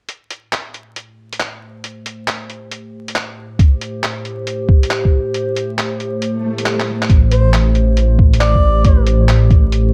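A close-miked alto saxophone with vibrato and dub echo floats in at 7.3 s for a brief, classically styled solo in this ghostly, rainy future garage fragment in A minor at 137 BPM, its 16ths swung over an Am7 chord. Beneath it, muffled, compressed sampler-style handclaps and hi-hat open the fragment, joined by a warbling, nostalgic tape-like pad fading in with chorus and sidechain pumping and, from 3.6 s, a thumpy, up-front kick. After a break with an electronic swell and a drum fill, a deep, rumbling detuned saw bass arrives at 7.1 s, all wrapped in a moderate digital room reverb and vinyl crackle.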